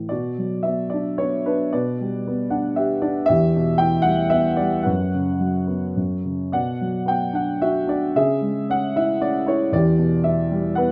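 Close, detailed microphones and light reverb frame a dark, boxy grand piano placed up front, its long sustain letting each chord ring into the next. This short excerpt from a longer classical piece is lyrical and hopeful, played alone in B minor in 3/4 with a rubato feel at roughly 104-118 BPM, spanning E2 to G5. A brief fill at 2.2 seconds adds movement as the harmony passes from B minor through E minor and an F-sharp suspension, then settles on C-sharp minor and an E minor add9 chord near 9.7 seconds.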